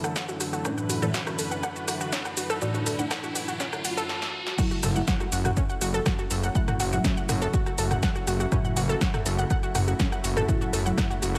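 A straight 4/4 pulse at 122 BPM drives this dark, melancholic melodic techno in F# minor: a punchy analog kick re-recorded in a large room sits under an overdriven, up-front deep house kit of snare, hi-hat, rim click, shaker, toms and crash. A lush, airy unison pad holds sustained chords while a round, bright analog pluck spins arpeggios through chorus, cassette tape colour and dub echo, and a muted, resonant dub chord stab with a moving notch, phaser and echo adds shadowy movement, all three pumping against the kick. A background riser builds through the opening and a drum fill caps it just before the drop at 4.6 s, which shifts the harmony from Dsus2/F# to F#m7; a fat, detuned sawtooth bass on F#1 follows at 4.8 s, with the whole mix set in a spacious 2.6-second hall reverb.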